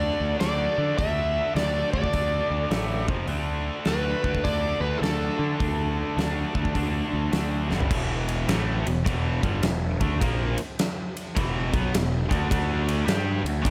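Heard through a large studio reverb with small-room ambience, this smoky, brooding blues rock and southern rock excerpt in E minor swings at 104 BPM. A dark, overdriven slide guitar carries the melody with slapback echo while a distorted lead guitar plays a second line in the background, both stopping at 7.3 seconds. Beneath them, a bright, double-tracked distorted guitar riff and an up-front fuzz bass that is punchy and overdriven drive the track. A huge arena drum kit with a fat snare enters at 0.4 seconds and plays a fill at 7.6 seconds.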